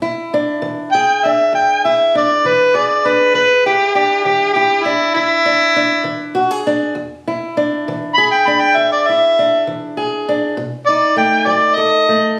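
Captured on a phone in the room and then given a moderate studio reverb and compression, this excerpt has a close, slightly roomy sound that keeps both players up front. It is laid-back, soulful acoustic country blues in a slow 12/8 at 66 beats per minute, sitting in E mixolydian with the tuning pitched a little high at A4 = 445 Hz. A fingerpicked old ladder-braced acoustic guitar carries the accompaniment from the first moment, its boxy, warm tone ranging from low E2 up to A4. At 0.9 seconds an amplified, overdriven harmonica takes the melody and the solo, gritty and warm, playing in a jazz style with tongue slaps between E4 and B5. The guitar holds on E7 until the change to B7 at 10.6 seconds, and the harmonica sits clearly louder in the mix throughout.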